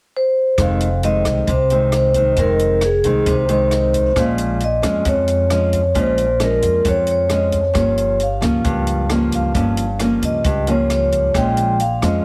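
A ringing, metallic vibraphone played with medium mallets and the motor off carries the melody from 0.2 s, sounding boxy as if in a small room, in this melancholic, intimate bossa nova cut from a longer piece. At 0.6 s a small, up-front, thumb-plucked nylon-string guitar with audible finger squeak, a woody, growly pizzicato upright bass on steel strings, and a dry compact cocktail drum kit with hi-hat, rim click and a punchy kick join in over Fm7, Bbm7 and Gm7b5 chords. Light reverb and a heavily compressed, radio-like sound give the whole an intimate feel.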